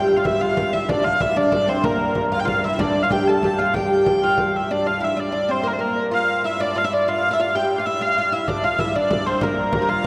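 Ancient and mysterious, this medieval dance in G dorian moves at 126 BPM in a straight 6/8, its fragment of a longer piece unfolding in a church or concert hall with a long, wet cathedral reverb. A nasal, boxy hurdy-gurdy carries the melody up front, with a woody, deep fretless oud plucked beneath it as a second line, while a viola da gamba sustains a pure, floating G2 drone with light vibrato. A large, close and dry frame drum struck with hard hands drives the first phrase, drops out at 4.5 seconds as the phrase repeats, and returns at 8.5 seconds.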